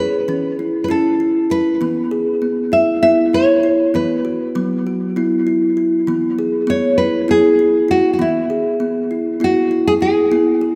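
A fingerpicked nylon-string guitar carries the melody up front, its full-bodied, deep classical tone marked by the faint squeak of fingers on the strings and ringing between E4 and E5. Beside it, a kalimba plays arpeggios in a lower register from E3 to G#4, its woody, boxy tone short and close, plucked with a thumbnail on a solid board. Both instruments sound together from 0.0 s to 10.8 s, each trailed by a diffuse ambient delay. This dreamy, gentle piece of meditative world music moves in 7/8 at 198 BPM counted in eighths, with a straight feel in E major pentatonic, tuned to A4 = 442 Hz. The harmony shifts from A/E to E at 1.8 s, then to B5/E at 3.9 s and back to E. A wet recital hall reverb with a small room ambience surrounds this short fragment of a longer piece.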